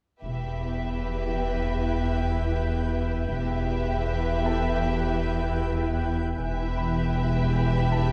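Cinematic and tense, this uneasy passage in E minor moves at 78 BPM in a straight 4/4, cut from a longer piece and resting on a single E minor chord. A symphonic violin section holds the melody on a high E with focused vibrato, while a smoother, more distant studio violin section carries a second line between G4 and B4. Underneath, close, lush cello and double bass sections anchor the bass on low Es, joined by a deep, mellow sine sub bass drone that sits up front. From 1.1 seconds a shimmering, ethereal pad with chorus, detuned layers and a grainy, octave-up glow sustains chords above, and from 1.4 seconds a very quiet, brilliant baby grand piano adds texture in its upper register. At 6.4 seconds a bright marimba struck with hard mallets enters in the background with a low riff, and the ensemble is heard from further back in a wet recital hall.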